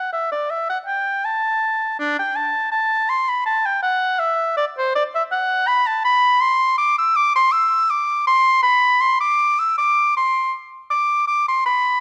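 In a 3/4 metre at 81 BPM, the pulse is treated with rubato, so the beat stretches and gives as the line moves. This is a classical, baroque-style fantasia for solo oboe, taken from a longer piece, and its mood is flowing and dance-like. The oboe carries everything on its own from 0.0 to 12.0 seconds, ranging from D4 to E6 and tuned to A4 = 442 Hz. Its tone is clear and present, sitting up front in a classical style. A moderate recital hall reverb, with a decay of about 1.8 seconds, surrounds the instrument with a sense of open space.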